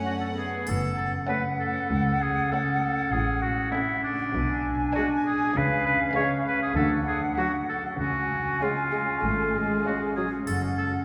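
This short cinematic cue, cut from a longer piece, opens with a chamber string ensemble in F# minor at 98 BPM in a straight 4/4. The very quiet violins carry a soft-attacked, sul tasto melody above a second violin line, while dark violas fill in the accompaniment and cellos hold the bass in the background. A clear, up-front oboe with light vibrato joins almost at once, and at 0.7 seconds a bright flute group, a distant, roomy clarinet and a rich, floating double bass section come in together. A close, dry triangle sparkles briefly at the start and returns at 10.5 seconds as the harmony settles back on F# minor after passing through D and C#. The mood is mischievous, quirky and whimsical, and the whole ensemble sits in a cathedral-like reverb that lends the intimate chamber playing a generous, church-like glow.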